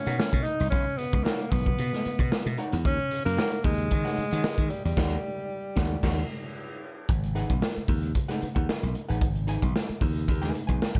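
A sly, funky funk excerpt at 113 BPM in a straight 4/4 feel, cut from a longer piece and set in a small room with a dark production. An alto saxophone with a soft attack and vibrato carries the jazz-style melody up front through analog delay, playing until 6.5 seconds. Beneath it, a slap bass sounds bright and punchy, while a vintage hollow-body jazz guitar adds clean, picked, shadowy accompaniment over Bmaj9 and D#7#9 chords. A raw garage drum kit with a punchy kick, medium-tuned snare, hi-hat and dark crash cymbals pumps with gritty saturation and a rolled-off top. The band hits accents from 5.0 seconds into a short break, and at 7.1 seconds the music moves to a new section on G#m7, where the guitar plays until 10.8 seconds as bass and drums carry on to the end.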